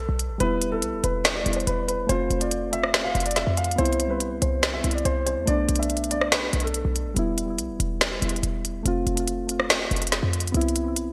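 A half-time trap beat at 142 BPM in 4/4 drives this hard-hitting, melancholic hip hop piece, with crisp hats, a woody snare and rim click up front under gated reverb, anchored by a punchy, tight 808-style bass. A dark baby grand piano with audible action noise carries the melody through a low-pass filter and digital delay until 7.1 s, while soft, round electric-piano-like synth keys with chorus enter at 0.4 s to trace Em, F, Cmaj7 and Bm7 in E minor. A lush hall reverb and bright 1980s-style digital production frame the mix.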